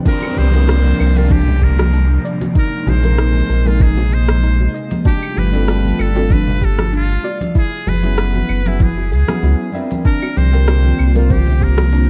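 A trumpet with a metal mute carries the jazz-style solo melody in this blissful sunset chillout excerpt at 96 BPM, its buzzy, thin tone touched with light vibrato and scooped notes and trailed by delay over sustained ninth-suspended chords. Fingerpicked nylon-string guitar with vintage 12-bit sampler grit provides accompaniment, while an airy, breathy pad with chorus and a soft, round pluck playing arpeggios through tape echo sit in the background. A deep sine sub bass stays up front in a dark, warm mix with light reverb. An overdriven electronic kick and a smooth R&B kit with crisp hats, cabasa, claves, rim click and crash cymbal hold the straight 4/4 beat, with bongos and congas in the background and a downlifter ending at 5.1 seconds.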